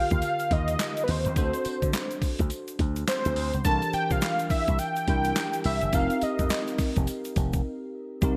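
New jack swing R&B at 105 BPM with a swung sixteenth feel, this punchy, confident excerpt sets a thick, detuned sawtooth unison lead with vibrato and a delay out front over bell-like chorused tine electric piano moving through Ebmaj7, D7, C7 and F7sus4, a bright slap bass pushed through an envelope filter, a gritty, pitched-down sampler drum kit with a thumpy kick, high-tuned snare, handclaps, hi-hat, tambourine and gated reverb, and a grainy tube shaker tucked in the background, all in a bright 1980s-style digital production with plate reverb, the lead dropping out at 6.8 seconds before a short break from 7.6 seconds.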